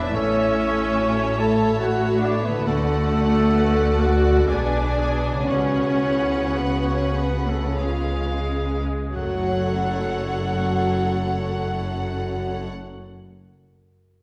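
Elegiac and yearning, this slow romantic orchestral movement in 3/4 moves with a rubato feel, easing back from 1.4 to 9.1 seconds as a bowed violin section carries the melody in a rich, vibrato-laden voice over a second line woven from background violins, a mellow oboe, a pure-toned small flute group and a smooth clarinet. Beneath them a distant viola section plays accompaniment, a roomy French horn section holds sustained chords, a very quiet thumb-plucked harp rings out arpeggios, and cellos share the bass line with an up-front double bass section. Soft-mallet timpani with a round tone enter very quietly at 5.5 seconds, and a wet hall reverb surrounds the ensemble as the harmony settles onto F#m at 9.1 seconds.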